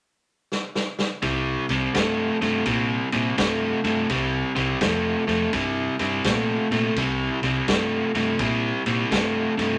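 A swung 4/4 shuffle opens this gritty, soulful electric blues excerpt, with a vintage drum kit's punchy kick, medium-tuned snare and dark ride cymbal playing a fill from 0.5 s before an up-front, overdriven picked electric guitar riff and a round, foam-muted fingered electric bass enter together at 1.2 s, all set in a moderate studio ambience.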